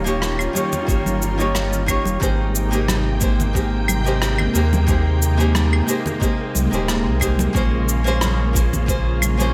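Sunset chillout with a blissful, smooth mood, built on an up-front fingerpicked nylon-string guitar with audible finger squeak and a digital delay, over silky, slow-blooming string-machine chords with ensemble chorus and a deep, round sub bass. Cabasa, rim click and claves played with brushes carry a gated reverb, hard-hand congas sit in the background, and a gritty, thumpy overdriven electronic kick enters at 0.9 seconds. The harmony moves from Eb9 to Abmaj9 at 2.2 seconds and to Bbm7 at 7.6 seconds, all in a bright 1980s-style digital production with a lush hall reverb.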